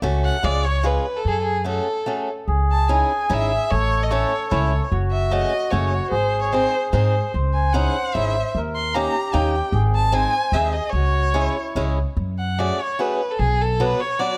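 A single bowed violin leads this whirling, bittersweet musette waltz, its rich tone shaped by expressive vibrato and portamento as it sings up front from 0.2 seconds. Set in C# harmonic minor at 148 BPM in 3/4, the passage is a short slice of a longer piece, moving through an opening theme, a longer contrasting middle stretch, and a return of the first theme at 12.2 seconds. A picked, swing-style acoustic guitar with a boxy sound supplies the accompaniment underneath, while a pizzicato upright bass adds a woody, growly, thumpy low end near the front of the mix. From 2.5 seconds a mellow accordion joins as a second line, its reedy voice dark, round and smooth, before dropping out shortly before the final theme. Close, detailed microphones and light reverb keep the small ensemble intimate and clear.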